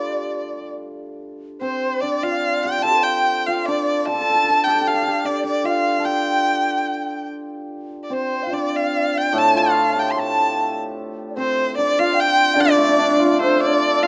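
A rubato pulse around 73 BPM in 2/4 carries this tender, graceful excerpt of Chinese traditional chamber music in D yu mode, where a rich, smooth bowed erhu sings the melody up front with vibrato and portamento, a bright, shimmering hammered dulcimer rings out a second line beside it, an airy bamboo xiao drifts in the background with unsteady vibrato and tongued notes, and a second dulcimer adds ringing accompaniment at the very start and again from 9.3 seconds, all captured by close, detailed microphones in light reverb.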